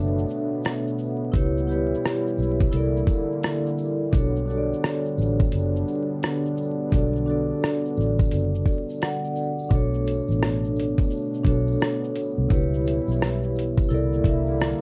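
A gritty, compressed sampler-style drum kit with a thumpy kick, hi-hat, rim click and shaker drives this hazy, melancholic lo-fi hip hop excerpt at 86 BPM in B minor with a swung feel, alongside an up-front, round, foam-muted electric bass and a ringing, band-limited vibraphone with slow motor vibrato that plays a fill from 8.7 to 9.7 seconds, over a dark, detuned analog pad with chorus, a faint, distant egg shaker, light reverb, worn tape warble and vinyl crackle.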